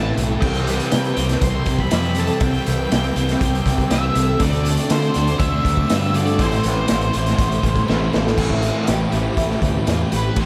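Melancholic and dreamy, this shoegaze and dream pop excerpt rolls along at 121 BPM in a straight 4/4 in A minor, with the whole mix soaked in a lush hall reverb. An octave-fuzz lead guitar carries the melody high above, its distorted tone trailing into a diffuse ambient delay, while an icy, crystalline glass pad holds sustained chords in the background with a slow attack and long release. A bright, boxy twelve-string acoustic guitar picks shimmering, octave-doubled arpeggios behind them, and three riffing electric guitars fill the low-mid ground: a biting, double-tracked overdriven part, a hollow-bodied overdriven semi-hollow, and a dark, very quiet thick fuzz guitar. Up front, a growling fingered bass with overdrive anchors the low end, and a raw garage drum kit enters at 0.2 seconds with a punchy kick, gritty saturation, dark cymbals and a pumping small-room sound. The harmony moves from Cmaj7 through D7 to Am9, and a drum fill at 7.9 seconds leads into a new section at 8.4 seconds.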